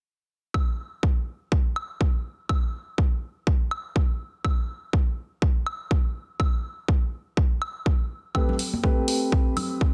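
A dense, heavily limited modern master in a digital ambience frames this smooth, warm deep house fragment, cut from a longer piece, where a punchy, overdriven electronic kick sits up front beside a layered, overdriven electronic woodblock and hi-hat, both re-recorded in a large room with a swung 16th-note feel. At 8.3 s a soft, thick-felt upright piano arrives up front with mellow, intimate Am9 stabs, pumping with sidechain and trailed by delay. Ringing, high-tuned congas struck with hard hands join close by at 8.5 s.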